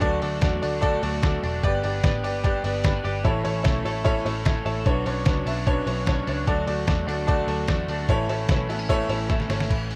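A lo-fi, sampler-style drum kit sits up front in this youthful, nostalgic stretch of jangly indie pop, its pitched-down, muffled sound giving a thumpy kick and fat snare an overdriven crunch under crash cymbal and hi-hat. The tempo is 149 BPM in a straight 4/4 in A major, moving through D, G, A, Bmadd9, D and A. A woody upright piano, also up front, is intimate and slightly detuned, with audible action noise, and it plays a short fill at 2.6 seconds before dropping out at 9.7 seconds. A twangy twelve-string electric guitar spins clean, bright arpeggios through analog chorus and delay, while a round, foam-muted picked bass adds a dark, punchy low end. A raw garage guitar with overdrive adds bright, picked accompaniment in the background. The rough home demo mix is dry, and a drum fill at 9.3 seconds closes this piece cut from a longer song.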